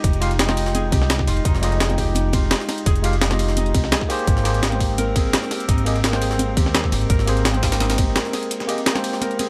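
Liquid drum and bass in a dreamy, melancholic mood, where a woody, dark pizzicato upright bass sits up front over a tight electronic kick until both drop out at 8.1 s, while a pitched-up breakbeat sampler-style kit with tape-warm hi-hat, ride and snare blends with a background jungle sampler-style kit whose overdriven, high-tuned snare and hats are high-pass filtered, congas enter in the background at 0.5 s, and a barky overdriven tine electric piano played through a combo amp with digital delay, a ringing fingerpicked Celtic harp with 12-bit sampler grit and delay, and a glassy, ethereal FM pad with chorus and reverb carry the harmony from Fm9 to Abmaj9 at 4.3 s.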